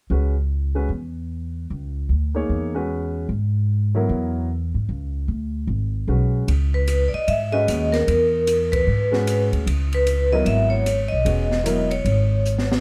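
A warm grand piano and a woody, thumpy upright bass open this cool, intense modal jazz excerpt, swinging at 151 BPM in C# dorian over a C#m7 chord. At 6.5 seconds an open acoustic drum kit joins with a high-tuned snare, boomy kick, ride and hi-hat, and the harmony moves to C#m9 as an up-front vibraphone takes the melody with bright, ringing tones and medium motor vibrato. A band accent lands at 8.7 seconds and a drum fill closes the passage, all within a dark production touched by light reverb.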